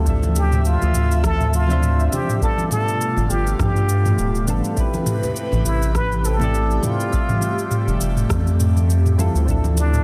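Sunset chillout with a smooth, wistful mood and a lightly swung feel, built on a round, up-front analog bass, soft electric-piano-like synth keys with chorus and delay, and an airy, breathy pad with chorus and phaser, moving through Dm9, G9, Am9 and Fmaj9. A deep electronic kick and a produced R&B drum kit with rim click, shaker, toms and a gently clipped snare come in at 0.1 seconds, while bright congas sit distant in the background. From 0.4 seconds a plunger-muted trumpet takes the jazz-style solo melody with wah-wah tone, vibrato and a touch of delay, and the piece, cut from a longer work, is set in light reverb within a dense, heavily limited modern master.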